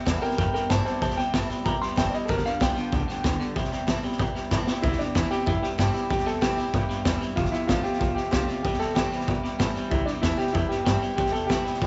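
A bright, full-bodied steel-string acoustic guitar and a clean, twangy electric guitar open this retro, upbeat rockabilly excerpt, with the electric's riff shimmering through a harmonic tremolo while both sit in the background. Upright bass and a raw garage drum kit arrive a moment later. The bass is woody and thumpy with gut-string pizzicato, and the drums are gritty and saturated, with a high-tuned snare, a boomy kick and a rolled-off top, placed up front. A warm upright piano carries the melody with a polished, present tone and long sustain, taking a solo that runs until 4.8 seconds, capped by a drum fill starting at 4.5 seconds. The piece moves at a brisk 189 BPM in straight 4/4 with a C mixolydian flavor, cycling through C, G7 and F. A small-room ambience gives the whole a close, vintage feel, as though caught from a longer performance.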